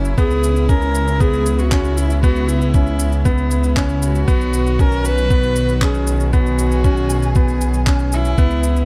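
This brief excerpt of piano and strings electronica opens at once with a dark string quartet holding bowed, sustained chords in the background, their vibrato and portamento giving a smooth, expressive chamber colour. A concert grand piano plays a short-sustain riff in its middle register with tape echo. Underneath, a detuned sawtooth bass sits up front, rumbling and beating with sidechain pumping, alongside overdriven, layered electronic shaker and handclaps. At 0.2 seconds a single viola enters with an intimate, airy sul tasto melody and light vibrato, joined by a muffled, thumpy, pitched-down kick drum. The moving, intimate mood unfolds at 117 BPM in a straight 4/4 over C#m7, shifting to B at 4.3 seconds, all set in light reverb with a small room ambience.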